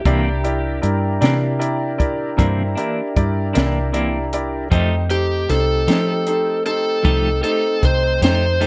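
A light reverb and studio ambience frame this short, rollicking slow blues fragment in a straight 12/8 feel. Up front, an overdriven slide guitar sings the melody with a gritty, fingered bite. Close beside it, a vintage foam-muted electric bass sits dark and round, while a compact cocktail kit with a high-tuned snare, tight kick and hi-hat keeps time with a smooth, rolled-off small-room tone. Further back, a clean, picked electric guitar shimmers with tremolo, a clear concert grand adds open, deep-voiced colour, and a mellow tonewheel organ holds sustained chords through a slow rotary speaker with a hint of key click. The harmony shifts from C9 to F9 at 4.7 s.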